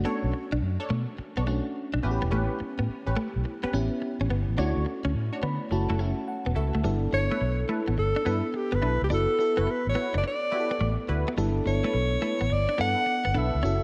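A bouncy, punchy R&B groove swings its sixteenths at 106 BPM in 4/4, anchored by a round, foam-muted vintage fingered bass sitting up front while a clean, direct-recorded electric guitar riff with analog chorus and funky, sawtooth polysynth stabs with a filter pluck fill in the pocket. A lush, dreamy FM electric piano with a soft pad layer, chorus and phaser carries the chords from Bm9 through A9, Dmaj7 and F#m7, adding a fill from 5.1 to 6.8 seconds. At 7.1 seconds a mellow alto saxophone takes the melody with vibrato, subtone and scooped notes, trailing a delay over G69 and D69/F# inside a lush hall reverb and a dark, warm production, in this fragment of a longer piece.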